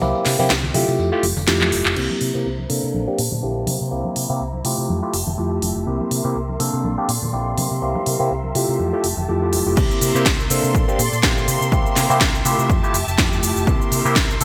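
Feel-good and joyful, this filtered disco house cut, lifted from a longer piece, rides a lightly swung groove that cycles through dominant and major-ninth chords. An overdriven, barky tine electric piano sits up front with a phaser and gritty combo-amp bite, while a dark, round hollow-body electric bass plays underneath, both pumping against the beat and softened by a low-pass filter. Tambourine and congas with hard hands stay in the background, and a layered house kit of cracking snare, crisp hats, handclaps, cabasa and crash arrives with gated reverb. After a short break capped by a drum fill, distant bowed strings with vibrato and portamento enter at 2.0 seconds as a filter sweep runs through the middle stretch. At the drop at 9.8 seconds a punchy, tape-tinged analog kick joins the mix as the hand percussion falls away, all set in a lush hall with a bright, 1980s-style digital sheen.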